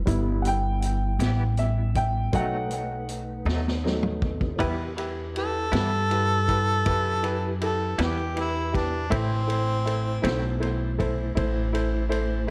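Slow blues in E minor at 53 BPM in a mournful, soulful 12/8, where a clear, worn grand piano takes the opening solo over a woody, thumpy pizzicato upright bass, a vintage drum kit with dark cymbals and a punchy kick, and a soft tonewheel organ through slow rotary speaker, before a drum fill at 3.5 seconds hands off to an up-front, overdriven harmonica solo from 4.6 seconds, with a bright, twangy clean electric guitar with tremolo in the background of an echo-heavy small-room mix.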